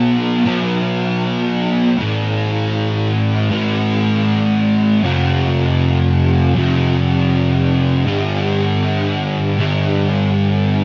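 A picked, double-tracked fuzz guitar plays alone and up front for the full 10.8 seconds of this dreamy, wistful rock fragment cut from a longer piece, moving through B5, A5, F#5 and G#5 in a straight 4/4 with distortion and ensemble chorus, its dark tone set in light reverb within a warm mix whose top end is rolled off.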